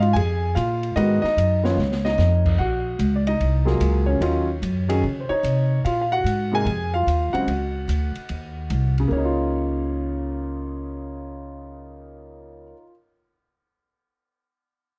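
A grand piano carrying the melody, a woody pizzicato upright bass and a small-room jazz drum kit with dark cymbals and a boomy kick all start together in this playful, warm jazz piano trio excerpt at 147 BPM in swung 4/4 and Db major, the up-front piano lit by plate reverb, with a drum fill at 1.8 seconds before the drums stop at 9.0 seconds and piano and bass carry on to a closing Db69 chord.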